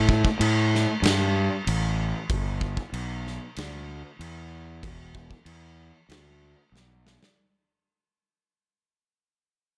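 Stoner and doom metal at 95 BPM in E minor, heavy and sludgy, with a growly, overdriven fuzz bass and an up-front rock kit of bright cymbals, boomy kick and medium-tuned snare in a dry studio room, fading out across the whole clip as a drum fill enters at 6.7 seconds.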